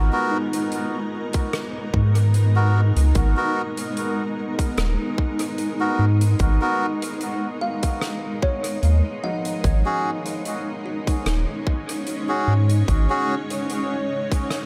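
A round, deep sub bass sits up front in this spacious, hazy ambient dub cut from a longer piece, holding under a single sustained chord while a bright, blurred granular cloud pad drifts and evolves with its own reverb. Reedy, breathy melodica stabs carry dub echo, and a woody thumb-plucked kalimba rings its arpeggios in the background through a gritty vintage 12-bit sampler haze and echo. A soft-mallet kit's hi-hat and rim click come in at 0.5 s with a lightly swung 16th feel, and a tight, overdriven electronic kick follows at 1.3 s; the bass drops out at 13.1 s, and a light small-room ambience wraps the whole mix.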